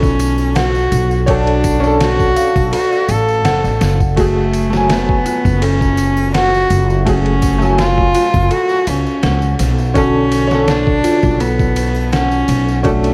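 A swung sixteenth-note feel at 83 BPM in 4/4 drives this hypnotic, cinematic trip hop passage, cut from a longer piece, with a compressed, pitched-down, muffled sampler-style drum kit of thumpy kick, medium-tuned snare and ride cymbal. Up front, a pizzicato upright bass with tube saturation sounds woody, growly and dark on its steel strings, while tambourine and triangle sit close and dry in the background. A single bowed cello carries the melody between A3 and A4 with light vibrato and a nasal, boxy, even tone, touched by tape echo. A clear, smooth upright piano with short sustain accompanies across a broad range, colored by tremolo, vintage 12-bit sampler grit and tape echo, as an eerie, inharmonic FM synth bell plays mellow, decaying arpeggios in the background through chorus, phaser and echo. The harmony moves from Bm7 to F#madd9 at 4.2 seconds and returns to Bm7 at 10.0 seconds, all set in a small room reverb with vinyl crackle.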